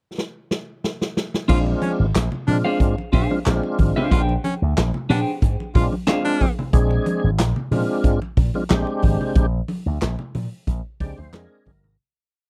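Funk at 92 BPM in Bb mixolydian with a strutting feel, opening on a drum fill before a Bb9 groove kicks in at 1.5 seconds, where a boomy, up-front drum kit lays a heavy on-the-one beat with handclaps, a bright, punchy enveloped slap bass drives a syncopated riff, damped congas add a groove, clipped clean guitar chords with spring reverb and a breathy, whispered baritone sax riff drop out before a break at 6.7 seconds, and a lightly overdriven tonewheel organ with slow rotary and chorus vibrato stabs and fills as the dry, close 1970s-style recording fades out.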